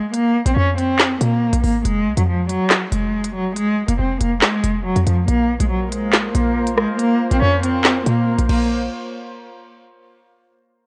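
A lone bowed cello opens this menacing, tense drill excerpt at 0.0 seconds, its soft attack, vibrato and sliding portamento giving an expressive single-player melody up front. Almost at once an electronic half-time drill kit arrives at 140 BPM in 4/4, with a woody snare, crisp hi-hats, rim clicks, handclaps and crash cymbal, all roughened by vintage 12-bit sampler grit. A short, punchy 808-style bass follows, a tight sine with a noise layer, fast attack and quick decay, sitting up front beside the drums. Harmony moves from Bbsus2 to F5 and back, settling on Bbmadd9 before the music drops away. At 5.7 seconds a quieter, nostalgic pad of detuned sawtooth and triangle tones fades in slowly with chorus and its own reverb, adding a mellow, lo-fi haze. The mix is dry, tuned to A4 = 444 Hz, and colored throughout by worn cassette tape with a warbling pitch drift.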